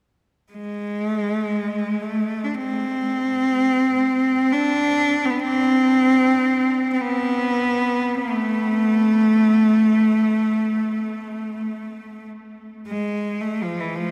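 Solemn and mournful, this Caucasian folk lament unfolds in free time in A harmonic minor, tuned slightly below standard pitch. A lone bowed cello plays from 0.5 seconds, moving between E3 and D4 with a bright, biting, nasal and intense tone, vibrato and an airy bow sound, heard close and up front. The player sits in a vast, echoing space whose huge reverb trails for seconds, and the passage is cut from a longer piece.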